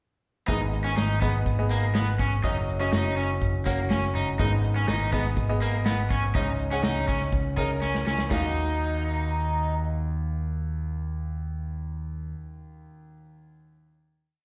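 Heard as a live gig through the venue's PA, this short piano-driven pop piece carries a moderate club ambience and recital hall reverb that lend it an earnest, bittersweet air. A clear concert grand piano with a deep bass and polished, short-sustained tone plays syncopated chords in drop-2 voicings, set in plate reverb and slapback echo. Up front, a raw garage guitar adds a bright, overdriven, picked figure that rings and repeats, also carrying slapback echo, while a picked electric bass holds a round, punchy, sustained line. An unplugged acoustic drum kit, airy and small-roomed, drives a pop backbeat on bundle sticks with a medium-tuned snare, tight kick, hi-hat and crash, closing its part with a fill that leads into the final chord at 8.3 seconds. The drums drop out first, then the guitar at 9.7 seconds and the bass at 12.3 seconds, leaving the piano to sound alone until 14.4 seconds.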